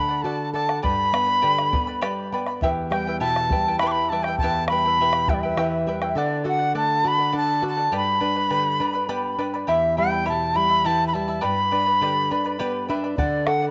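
A breathy, reedy quena with vibrato carries the melody up front in this festive, earthy Andean folk excerpt in E minor, moving at 68 BPM in a straight 6/8 over a shimmering, fingerpicked charango and a classical nylon-string guitar that adds a fill at 12.3 s, while a round, dry bombo plays from 0.5 to 6.2 s and returns briefly at 13.2 s, the whole recording set in a moderate plate reverb with a softened top end.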